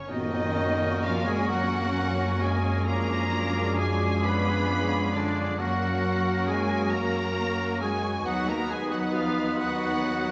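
A focused, lush violin section carries the melody in this tender, lyrical excerpt from a slow romantic orchestral movement in F# major, moving in a rubato 6/8 at 44 BPM over smooth cellos and an expressive double bass section. Mellow, distant trumpets add stabs while a clear solo oboe, a mellow clarinet, a crisp, far-off flute ensemble and an intense studio violin section trace second lines, with even violas and dark horn chords filling the background. A very quiet tam-tam sounds until 3.7 seconds, with an ensemble accent at the opening, and the whole orchestra sits in a reverberant scoring-stage space as the harmony moves from F# through C#7b9/F# and back before settling on B/D#.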